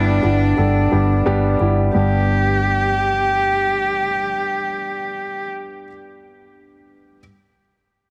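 A heavily compressed, radio-style sound with multiband compression sits inside a moderate concert hall reverb on this warm, hopeful pop fragment with a light swing. A single bowed cello, intimate and up front, carries the melody with light vibrato and a soft sul tasto attack until 5.4 seconds, while a dark, foam-muted electric bass with a round, amped tone holds a low G until 5.9 seconds. An up-front concert grand piano with deep bass and short sustain accompanies throughout, continuing by itself after the bass drops out until the close at 7.2 seconds.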